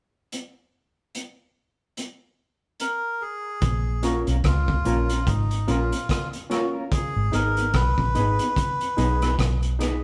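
A live band in a moderate stone room carries this uplifting roots reggae excerpt, opening on a crunchy, gritty breakbeat kit of hi-hat, tight kick and rim click before a breathy, nasal melodica takes the melody at 2.8 s. A round, foam-muted electric bass joins at 3.6 s as an A#m chord arrives, with the harmony moving to G#m at 6.9 s. From 4.0 s a mellow, clean electric guitar with tremolo and slapback echo fills in accompaniment while a barky, lightly overdriven reed electric piano with fast tremolo adds stabs.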